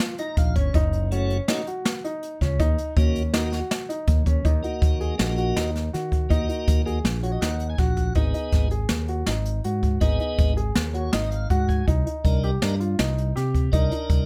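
Progressive instrumental band music in 5/4 at 162 BPM, brooding and driving in Eb minor, moving through chords such as Bbm, Gbm, Ebm, Abm and Cm7 in a short cut from a longer piece. An airy, polished brush drum kit with a boomy kick and a medium-tuned snare sits up front beside a direct, amped fingered electric bass, while a natural-sounding baby grand piano plays arpeggios. A piping, scooped tonewheel organ, lightly overdriven with key click and a slow rotary speaker, comps from 0.2 seconds and adds fills, with the music shifting into a new section at 4.4 seconds under light reverb.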